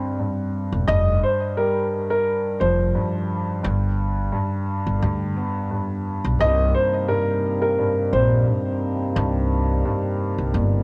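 A dark, mellow haze of cassette tape and moderate booth ambience frames this reflective, tough hip hop cut in C minor at 87 BPM with a light swing, where a vintage baby grand lays down chords from the start, a thumpy pizzicato upright bass joins at 0.7 seconds, a woody upright piano carries a short-sustained melody with tape echo, and a fat tonewheel organ through a slow rotary speaker adds sustained chords from 6.4 seconds over a progression moving from C5 through Fsus2 and G to Cm7.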